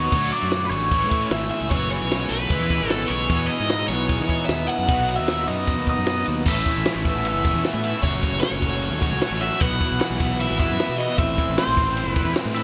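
A straight 4/4 groove from a compact cocktail drum kit with a punchy kick, high-tuned snare and dark cymbals carries this jangly, carefree indie rock excerpt, where an up-front overdriven lead guitar with phaser and delay plays the melody over a crunchy chorused rhythm guitar set in the background, a compressed fuzz guitar riff, a growly fuzz fingered bass and a very quiet, flute-like tonewheel organ on slow rotary that holds soft chords from 3.3 seconds, all within a lush hall reverb and bright 1980s-style digital production.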